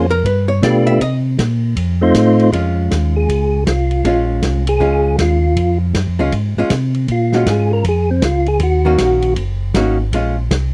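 Swinging in 4/4 at 158 BPM, this smoky, soulful soul jazz organ trio in Bb minor opens with a dark, compressed hollow-body archtop guitar solo before a percussive tonewheel organ with third-harmonic percussion and slow rotary speaker takes over the solo at 2.5 s, all over a round organ bass with vibrato and key click and a dry, mid-forward drum kit with a tight kick, medium-tuned snare, hi-hat and ride, in a close 1970s-style studio sound.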